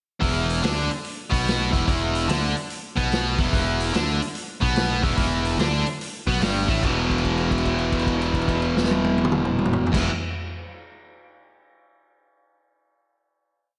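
Blues rock power trio with a southern rock edge, this brooding, smoky swung piece sets a bright, overdriven, double-tracked electric guitar out front on an octave riff, doubled by a round, fuzzy fingered bass playing a boogie figure, over a punchy vintage drum kit with dark cymbals and toms, before the riff gives way at 6.8 seconds to a final held chord in a big arena sound with lush hall reverb and slapback echo on the guitar.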